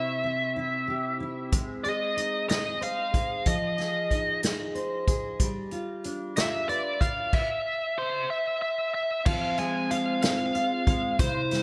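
Aching and melancholic, this six-eight pop ballad moves at 62 BPM in a straight 6/8 feel, cut from a longer piece and tuned to A4 = 437 Hz. A biting, overdriven electric lead guitar carries the melody up front with delay, set against a full-bodied, double-tracked fingerpicked jumbo acoustic guitar strung with fresh strings. At 1.5 seconds an unplugged drum kit enters, played with bundle sticks in a roomy studio space, its punchy kick, medium-tuned snare, hi-hat and dark crash cymbals sounding distant yet up front. The harmony passes from C through Ab, Fm7 and G7 to a bare stretch with the chords dropped out, then settles on Fm as a dark French horn section with light vibrato and a smooth top joins on a second line at 9.3 seconds. A moderate plate reverb and bright 1980s-style digital production frame the whole.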